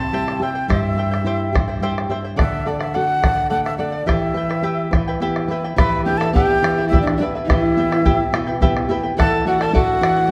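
In a straight 6/8 at 71 BPM, this wistful yet festive Andean folk excerpt in E minor sets a reedy, distant large quena with vibrato and a soft attack over a shimmering, fingerpicked charango on double strings, an up-front, full-bodied nylon-string guitar with audible finger squeak, and a deep, dark bombo from 0.3 seconds. A bright, chiffy pan flute then joins with a tongued second line at 5.8 seconds, the ensemble set within a moderate concert-hall reverb.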